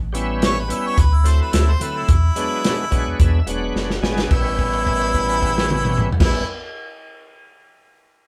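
A deep, clean sine sub bass opens this swaggering, soulful straight-eighth soul blues in A mixolydian at 108 BPM. It is joined at once by an up-front soul drum kit with a punchy kick and dark cymbals, and by a bright, shouting tonewheel organ with light overdrive, key click, chorus vibrato and a slow rotary speaker. A distant, roomy harmonica carries the jazz-style melody with light vibrato and scooped notes. The organ fills from 2.6 seconds and the drums fill from 3.8 seconds, and a held note rings from 4.3 seconds as the chords return to A7, with the band playing live in one room under moderate reverb.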